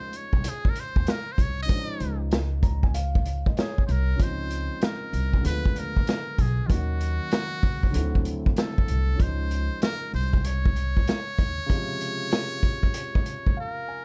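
A dry, dark mix carries this relaxed, smooth jazz-hop excerpt at 96 BPM with a swung feel in Db major, where a buzzy, breathy trumpet with a metal mute solos over the opening 4.2 seconds. A mellow grand piano with audible action noise comps through and adds fills from 2.3 and 13.3 seconds, a woody, thumpy pizzicato upright bass anchors the low end, and an up-front vintage kit with a punchy kick and rolled-off top pumps in a small room before a brief closing break.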